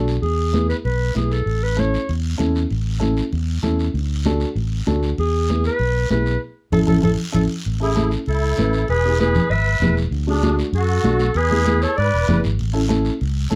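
A straight, festive cumbia groove at 194 BPM in A major drives this danceable piece, with a raspy, close guiro, bright, high-tuned congas in the background, a growly, punchy fingered electric bass up front, and a dark, woody upright piano filling out the chords; a vintage, classical-style clarinet carries the melody, a band accent lands around 6.4 s, and a reedy, shimmering musette accordion joins as a second line at 7.8 s under light reverb.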